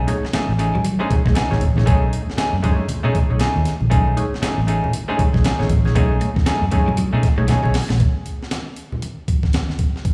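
Funk at 117 BPM in 4/4, strutting and energetic, with a swung sixteenth-note feel over a B13 chord in B mixolydian. A gritty, sampler-style breakbeat kit sits up front with a thumpy kick, medium-tuned snare and hi-hat, and a dark, round, foam-muted fingered bass drives punchy lines beneath it. A mellow, stringy clav plays stabs through a combo amp. A clean, compressed hollow-body jazz guitar adds accompaniment, while a slightly broken-up electric guitar riff sits in the background, dropping out early and returning near the close. All three of those keyboard and guitar parts carry slapback echo, and bright, thin-skinned, low-tuned congas fill in behind. After a drum fill at 7.5 seconds, the harmony cuts out at 8.0 seconds, leaving drums and congas alone until 10.1 seconds, all heard as a live gig through the venue's PA with a light club reverb.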